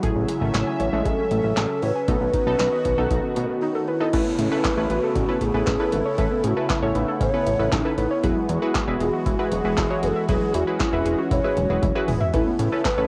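Synth-pop at 117 BPM with an upbeat, nostalgic glow: a breathy, round clay ocarina carries the melody over a punchy, funky polysynth comp, a lush unison pad with chorus and phaser, a dark, warbling pluck tucked in the background on arpeggios with analog delay, and a fat, detuned analog bass up front. An electro analog drum machine drives it with a deep kick, punchy snare, metallic hats and handclaps, and a very quiet downlifter sweeps through from 4.2 to 8.2 seconds after a brief silent gap, with a drum fill near 11.8 seconds. The chords move from Amaj7 and B7 to Aadd9 and Eadd9, and the whole home recording on cassette carries a light reverb and a dusty, lo-fi tape character.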